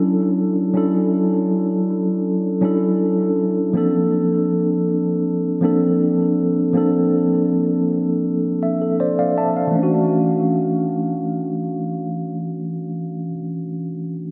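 Dreamy and tender, this R&B excerpt moves at an unhurried, straight pace in four. A mellow tine electric piano plays alone from start to finish, sitting up front with a clean, warm tone heard through its built-in speakers and trailed by tape echo. The harmony settles on a Dmaj9 chord, shifts to Bbmaj9 at 3.8 seconds, and returns to Dmaj9 as a new section begins at 9.8 seconds. Just before that return, the piano adds a short fill starting at 8.3 seconds. A lush hall reverb with a long 2.8-second tail soaks the whole mix, giving it a hazy, floating quality, and the fragment is cut from a longer piece.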